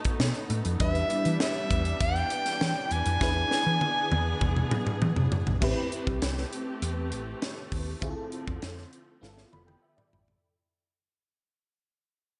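Opening together, a dreamy, chorused FM electric piano with a soft pad layer, a bowed studio string section with expressive vibrato, and a crisp, up-front fusion drum kit with a high-tuned snare and tight kick set a slick, urban 1980s jazz-funk pop groove, joined almost at once by a dark, round hollow-body electric bass, while a breathy soprano saxophone with scooped notes and slapback echo carries the melody from 0.8 to 5.0 seconds. A drum fill from 3.2 seconds leads into the fade-out that begins at 5.6 seconds, and another drum fill and an electric piano fill arrive together at 9.2 seconds, the whole set in a lush hall reverb with a big arena sound.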